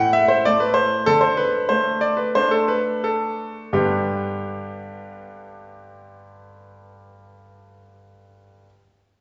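This classical-period piano sonatina fragment, cut from a longer piece, is graceful and playful, moving in 4/4 at 82 to 98 BPM with a rubato feel in G major, tuned to A4 = 444 Hz. A solo concert grand carries the whole 8.7 seconds, ranging from G2 up to F#5 with a clear, polished tone, a deep bass and a short sustain, sounding present and up front. The opening phrase gradually slows through its first 3.7 seconds, moving over A5 and D5 harmonies before settling on G as a new section begins at 3.7 s. That second passage runs to 6.5 s, and the piano continues on to the cut. A wet recital-hall reverb with a 1.4-second decay surrounds the instrument, and the listening position sits further back in the room, with a softened top end that rolls off above 7.8 kHz.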